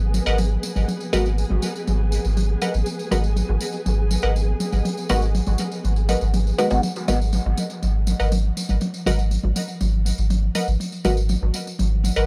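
Deep and hypnotic, this short dub techno cut from a longer piece rides a straight 4/4 pulse over a single G#m7 chord. A soft, round sub bass sits up front for the whole stretch, mellow and sustained beneath everything. A flickering, grainy texture with its own reverb hovers above at the start and stops at 6.9 seconds, while electronic toms and congas, re-recorded in a large room and trailing dub echo, join a jingly tambourine from a small room. A crisp, detuned wavetable chord stab plucks bright digital chords through dub echo, and a muted, nasal filtered chord stab enters at 1.1 seconds, its resonant sawtooth tone colored by phaser, cassette tape and dub echo. A filter sweep runs across the synth stab in each of the two matching halves, which turn over at 6.8 seconds. The overall sound is dry and gritty, with a hardware, cassette-tape character.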